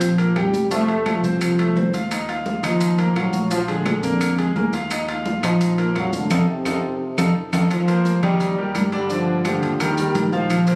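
Salsa at a brisk 172 BPM in 4/4, joyful and danceable, with a dark, punchy trombone section carrying the melody up front, its light vibrato riding over a brilliant concert grand piano and a round, fingered electric bass. Damped, high-tuned congas, ringing metal-shell timbales and woody claves sit in the background, with the claves entering at 0.4 seconds, while grainy maracas sound close and dry. The band hits an accent from 6.3 seconds, capped by a drum fill at 7.0 seconds, before the harmony moves into a new section, all heard through a phone recording in a club-like room with compression.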